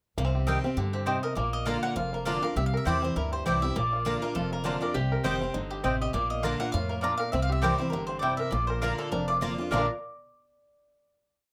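A swung two-beat pulse at 201 BPM in 4/4 drives this short, rustic and joyful bluegrass piece in Bb major. The thumpy, woody upright bass plays root and fifth with walk-ups under a bright, full-bodied dreadnought guitar that alternates bass notes and strums with bass runs. A mellow, twangy banjo rolls three-finger patterns, and one mandolin chops stabs on the off-beats. From 0.9 seconds a second mandolin, warm and double-strung, carries the fiddle tune in running eighth notes over a chord cycle of Cm, Bb and C. A metallic, nasal lap resonator guitar, played with slide and fingerpicks, slips in answering phrases in the melody's rests around 4.9 seconds, and the piece settles on a final chord at 9.7 seconds, heard through close, detailed microphones and light reverb.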